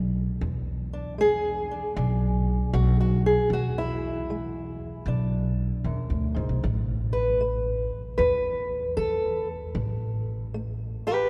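Acoustic country blues with a swaggering, soulful swing, this brief excerpt features an up-front, fingerpicked old ladder-braced guitar, dark and boxy with old strings, carrying the melody over a thumpy pizzicato upright bass, all bathed in the long, wet reverb of a cathedral-like hall as the harmony moves from E7 to A5 at 6.6 seconds.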